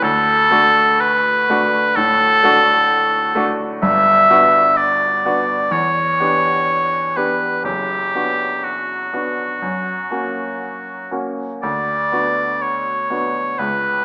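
Rubato phrasing stretches the 62 BPM pulse in 4/4 into uneven beats in this elegiac, yearning Romantic duo in B minor, drawn from a longer piece. An up-front solo oboe sings the melody between F#4 and E5 with a clear, present classical tone, while a grand piano sits lower in the mix with a clear, present, short-sustained accompaniment reaching from F#1 to G4, moving from D through Gmaj7, Em7, Bm/F# and F# to Bm/D. A moderate recital hall reverb surrounds both instruments, and the recording has a small-speaker sound.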